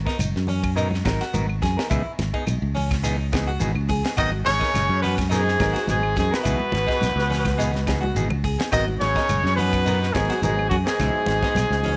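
Afrobeat with a defiant, hypnotic pull, cut from a longer piece: a round, punchy fingered electric bass sits up front beside a tight, polished funk kit with a high-tuned snare, while a plucked harpsichord with slapback echo spins arpeggios, a dark, clean electric guitar adds stabs, and woody claves, very quiet congas and a grainy shekere fill the background. At 4.2 seconds a vibrato-rich trumpet takes the melody up front, shadowed on the second line by a raspy, gritty baritone saxophone and a veiled cup-muted trombone. After a drum fill, a lightly overdriven tonewheel organ with a slow rotary speaker enters very quietly at 8.7 seconds, all in a small room with light reverb over alternating G#m9 and C#m9 chords.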